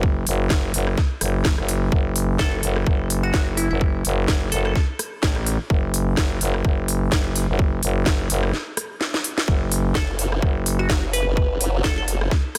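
A growling FM bass and a tight, up-front electronic kick open this short bass house excerpt, the bass thick and saturated with a pumping sidechain that gives the aggressive, bouncy groove its push. A garage drum kit joins almost at once with a cracking snare, crisp hats and rim clicks, its layered, tape-warm sound carrying the character of a large room while swinging on the sixteenths. A glassy wavetable pluck drifts in at 2.4 seconds, a crystalline, bright line in the upper middle register coloured by chorus, delay and a ring-modulated edge. A brief break arrives with a drum fill just before 9.5 seconds, and soon after a detuned, formant-swept wobble bass enters alongside the growling bass, which drops out shortly afterwards, while the pluck returns. The whole excerpt sits in a dense, heavily limited modern master with a digital ambience.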